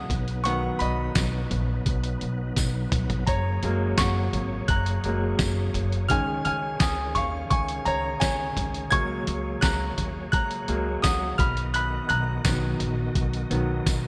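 A straight 4/4 groove from a muffled, thumpy lo-fi sampler-style drum kit with gated reverb, with fills at 2.6 and 13.9 seconds, carries this warm, uplifting piano-driven pop excerpt: a brilliant, polished concert grand piano takes the lead over reedy tonewheel organ chords with chorus vibrato and fast rotary speaker, woody pizzicato upright bass, and a jingly, close tambourine that enters at 1.2 seconds, set in a light small-room reverb and bright 1980s-style digital production.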